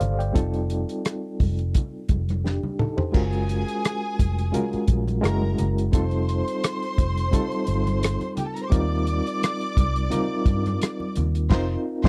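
This lush, smooth 1970s-style soul excerpt opens with a gritty, overdriven reed electric piano pulsing with fast tremolo, a round, foam-muted fingered electric bass and a soul drum kit with a fat snare, tight kick and dark cymbals, each up front over lightly swung sixteenths, while ringing congas played with soft hands sit in the background. After a drum fill, a bowed violin section enters at 3.1 seconds with vibrato and an even, smooth-topped ensemble tone over rich extended chords. A band accent arrives at 11.5 seconds, and the close, dry studio sound carries little reverb.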